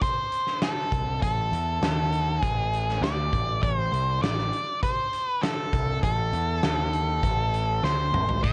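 This short, gritty cut from a longer classic rock piece sounds dry, with the hazy character of cassette tape. An up-front, fuzzed-out lead guitar carries the melody from the first moment, its dark, distorted tone sitting in a fairly high register over a straight 4/4 groove. Beneath it, a huge arena drum kit with a fat snare and boomy kick pounds away, roughened by vintage 12-bit sampler grit, and a drum fill arrives at 7.8 seconds. The punchy picked bass joins at 0.9 seconds, overdriven and direct, anchoring the low end on a minor chord. A sludgy, double-tracked guitar riff only sneaks in at 8.4 seconds, just as the excerpt cuts off, adding to the swaggering mood.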